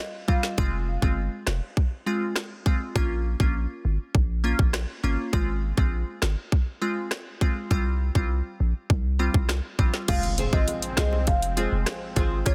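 A glassy, crystalline wavetable pluck with chorus opens this sultry, hypnotic dancehall cut in F minor at 101 BPM, joined at once by an overdriven island pop drum kit with a tight kick and woody snare, a brief note from a soft-mallet marimba through digital delay, and, from 0.6 seconds, a deep, boomy 808-style bass moving through Fm, Bbm and Csus4. At 10.1 seconds the marimba returns with its woody, round melody as a lush, nasal unison pad with sidechain pumping, very quiet close-miked bongos and a faint electronic impact arrive, and a fingerpicked flamenco guitar adds arpeggios from 10.4 seconds. The mix is dry, dense and heavily limited, with the drums and bass up front.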